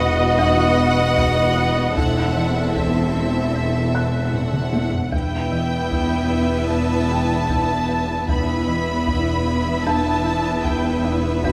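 A moderate scoring-stage reverb gives this short cut from a longer suspense film score a sense of depth, framing an ominous, eerie atmosphere. Two violin sections share the upper strings: a distant, lush symphonic section carries the intense melody, while a focused, close studio section plays a second line beneath it. A rich, smooth symphonic viola section supplies accompaniment. A background cello section and a clear chamber double bass section both anchor the bass on E. A woody, dry folk marimba plays a rustic, band-limited riff in its low register, and a very quiet felt-muted upright piano adds a mellow, dark texture up high, its action noise faintly audible. A compressed, saturated taiko ensemble enters at 1.2 seconds in the background, with a drum fill at 4.3 seconds, as the harmony moves from B over E through A minor over E and settles on E minor at 5.1 seconds.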